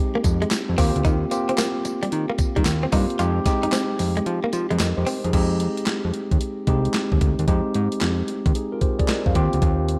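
Bouncy and punchy, this new jack swing cut from a longer R&B piece sets a clean tine electric piano, played through a combo amp, over a fat, saturated sawtooth analog bass and a crisp, sampler-style 8-bit drum machine with a thumpy kick, handclaps, tambourine and gated reverb. A compressed, direct-recorded clean electric guitar riff with lush chorus runs until 5.2 seconds, and the kick sits out from 4.3 to 5.3 seconds, as the harmony moves between Fm7 and Eb6.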